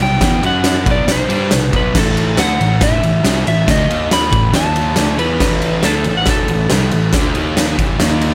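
Garage rock with a swaggering, raw mood, this short excerpt cut from a longer piece drives along at 139 BPM in a straight 4/4, with all four parts playing together for the full 8.3 seconds. An oversized, low-tuned acoustic drum kit sits up front with a boomy kick, fat snare, dark crash and ride cymbals and a pumping big-room sound, while a double-tracked, distorted fuzz guitar plays the riff over a warm, overdriven fuzz bass. On top, a bright, slightly broken-up electric slide guitar played with fingerpicks carries the melody, all under a light reverb.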